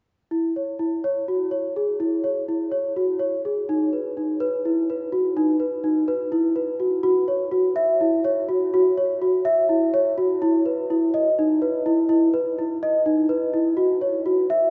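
A large celesta plays alone in this short contemporary instrumental excerpt, its bell-like, sweet tone ringing from D#4 to E5 over a brisk 250 BPM pulse in 7/8, hopeful and playful, shifting into a new section at 7.0 seconds while a cathedral reverb lingers 6.2 seconds in a church-like space.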